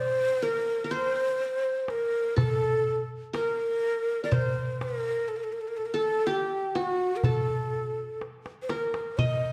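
A breathy, end-blown reed ney carries the longing melody from the opening moment, close and up front with vibrato, tongued notes and an unsteady edge, while a plucked qanun with bright-edged triple strings plays a quieter second line beneath it. A clay-shelled darbuka with a natural skin enters at 0.9 s, dry and close, setting a hypnotic 10/8 pulse and adding a fill from 8.2 to 9.2 s in this brief Arabic maqam ensemble passage cut from a longer piece. The dark, warm production sits in a moderate recital-hall reverb.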